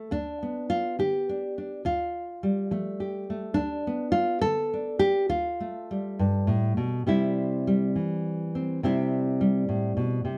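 A nylon-string guitar sounds first, fingerpicked and up front, opening on a G over D bass in an intimate, melancholic folk style. Playing alone in 6/8 with a loose, rubato feel, the guitar moves to an F with an added ninth over the same D bass and then returns to the G chord, reaching from a low D2 up to A4. Its classical-leaning, warm tone carries an audible finger squeak that keeps the performance close and human. At 7.1 seconds the music turns to a new passage on a C chord, and this brief fragment of a longer piece stops at 10.4 seconds. A moderate studio reverb and a dark, warm production give the guitar a hushed, private setting.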